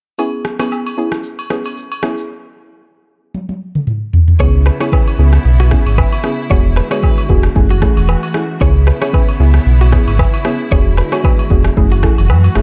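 The recording is dark and dry, with the sub bass and the electronic afro-pop drum kit sitting up front, the kit carrying a tape-warm, produced punch with a deep kick, rim clicks, shaker and toms over a lightly swung 16th-note feel. This mellow, smooth afrobeats passage, cut from a longer piece, opens with a soft, round pluck outlining a C#m7 chord through chorus and phaser, with acoustic agogo bells and woodblock ticking quietly underneath. The drums drop out at 2.3 seconds over a brief pause in the harmony, and a drum fill then leads into the second section. At 4.4 seconds the full, sine-like sub bass enters along with an intimate, bowed string section holding sustained chords with vibrato and a smooth top. At the same point, a clean, compressed electric guitar recorded direct plays a picked riff through tape echo, as the harmony moves from C#m7 through E7 to F#m7 and back again.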